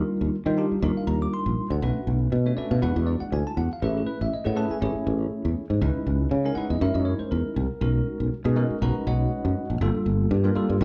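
A growly, direct fretless electric bass sustains up front from 0.2 s beneath a bell-like, clean tine electric piano that sounds as if heard through its built-in speakers, carrying this soaring, slick electric jazz fusion fragment at 120 BPM in 4/4 with a light sixteenth-note swing through lush chords from Ebmaj9 to Gm7, all set in a moderate large-studio reverb with a live-band-in-one-room feel.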